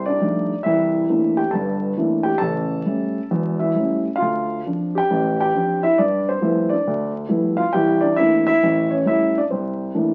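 Swinging and sophisticated, this brief cut from a longer solo jazz piece moves at 135 BPM in C mixolydian with a loose, rubato lilt, as an intimate, mellow baby grand sits up front with its action noise audible, spanning deep bass to treble through rich thirteenth and seventh chords, all bathed in studio reverb and the crackle and faint hum of a very old 78 rpm record.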